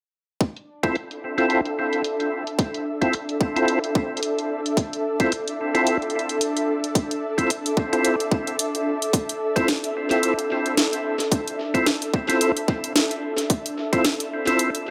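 Funky and swaggering, this glitch hop piece is cut from a longer track and moves with a swung sixteenth-note feel. An overdriven electronic kick sits up front with a tight punch, joined by a layered drum kit of cracking snare and bright hi-hats, both given overdrive, studio reverb and filtering, and the hats and snare also carry tape echo. A filter sweep runs over the drums from 0.4 seconds to the end. Percussive tonewheel organ stabs enter at 0.8 seconds, fat and lightly overdriven, with key click, third-harmonic percussion, chorus vibrato and a slow rotary speaker, pumping with sidechain compression and trailing tape echo. An ethereal, airy pad arrives at 1.1 seconds, a warbling, vintage blend of detuned sawtooth and triangle voices with a slow attack, long release and lush ensemble chorus, also pumping with sidechain compression. A wet spring reverb and heavy echo in the mix give the whole groove a dripping, spacious sheen.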